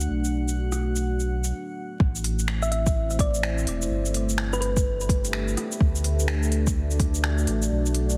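This future garage piece is nocturnal and melancholic, moving at 126 BPM in 4/4 with a 63% swing on the 16ths, in A dorian. A deep, moody ambient pad of detuned sawtooth unison with a sub octave holds slow-blooming chords through chorus, reverb and sidechain pumping. Beneath it, a round sine sub bass pumps alongside. An overdriven kit of finger snaps, smooth hi-hat, rim click and shaker plays across the whole passage. At the start, a calm, glassy texture of drifting overtones sits faintly high above, until a brief stop at 1.5 seconds. At 2.0 seconds, a deep, overdriven electronic kick arrives up front, and at 2.6 seconds a tine-like, warbling FM pluck with a vintage feel sings a short, mellow melody through chorus and delay. The chords move from Bm7 to Am, Gadd9 and D, and the whole mix has a heavily compressed radio quality with vinyl crackle and a light digital ambience.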